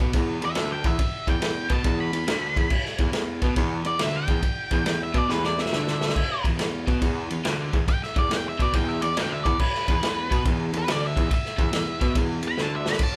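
A swung 140 BPM groove in 4/4 and E minor drives this heavy, gritty blues rock and southern rock power-trio excerpt: a punchy, up-front vintage drum kit with a medium-tuned snare and rolled-off top adds fills at 5.3 and 12.6 seconds, a warm baritone saxophone with vibrato carries the bass line in a subtone jazz style, a bright, double-tracked, crunchy overdriven guitar picks the riff, and a dark octave-fuzz lead guitar solos from 0.4 seconds, with light reverb giving the sound of a band playing live in one room.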